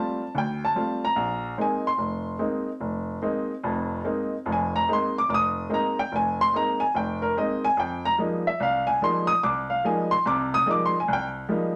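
A solo upright piano opens this jazz excerpt, its woody, intimate tone sitting up front with the click of its action audible beneath the notes. The mood is intense yet cool, carried by a swung eighth-note feel in four and a harmony that moves through suspended chords, G9sus4 and then Bb9sus4 at 1.2 seconds. At 7.8 seconds the music settles onto a minor eleventh sound as a second section begins. The playing covers a broad span of the keyboard, from deep bass notes to bright upper tones, and each note has a short, natural sustain. A moderate club reverb places the piano in a club-like room, and the passage is cut from a longer piece, ending at 11.8 seconds.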